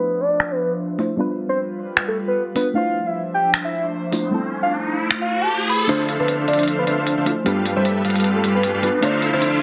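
Bittersweet and lush, this future bass excerpt moves in a half-time, lightly swung 4/4, cycling through Dm9, G7 and C6 chords. A mellow octave-layered synth lead carries the melody over a round, dark pluck and an airy, breathy pad that holds sustained chords with a slow attack, all three treated with chorus and the lead and pluck also with digital delay. From 0.4 seconds a crisp, overdriven trap kit of finger snaps and hi-hats sits up front, while filter sweeps move across the pad through the opening stretch. A riser enters at 3.9 seconds to build toward the second section, where at 5.9 seconds a huge, thick, detuned supersaw riff arrives under its own filter sweep as a build-up begins. A moderate room reverb surrounds the parts, and the master is dense and heavily limited.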